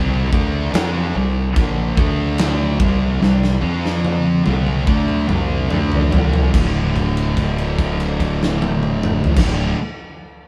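A live-room recording with light reverb captures a brooding, heavy stoner and doom metal passage in D minor at a slow 72 BPM, cut from a longer piece. A thick, double-tracked fuzz guitar sits up front with a dark, distorted riff over a growly, overdriven fingered electric bass and a big acoustic drum kit with a fat snare, punchy kick and rolled-off top. The chords move through C5, D5 and F5, with a drum fill from 3.2 to 6.5 seconds before a held note rings out until 9.4 seconds.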